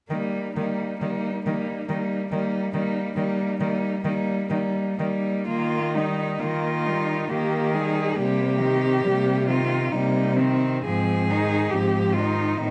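A rich, focused cello carries the melody up front, its bowed line sung with vibrato and a smooth top in this warm, lyrical classical piece for cello ensemble, cut from a longer work. Three more cellos play throughout: a second line sits in the background with expressive portamento, while a clear, even accompanying cello and an intense bass cello with an airy bow stay up front. The music moves in a slow 3/4 at 67 BPM in Eb major, with uneven beats and free rubato that let each phrase breathe. A new section begins at 5.5 seconds, and the harmony shifts from Eb to Cm7 at 8.2 seconds and to Fm7 over Ab at 10.9 seconds. The ensemble sounds in a recital hall whose generous reverb rings for about 1.6 seconds.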